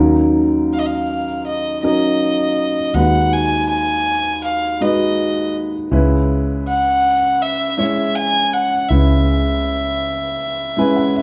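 At a slow 80 BPM in a straight 4/4, this short acoustic folk-pop ballad excerpt moves through D#m7, G#m7/D# and C#m7 with a nostalgic yet hopeful mood, carried by a woody, intimate upright piano with audible action noise and long sustain alongside a round, punchy foam-muted electric bass that drops out at 10.4 seconds. From 0.7 seconds a single bowed violin sings the melody up front, earthy and smooth on top with light vibrato. The band plays live together in one large studio, wrapped in a moderate reverb.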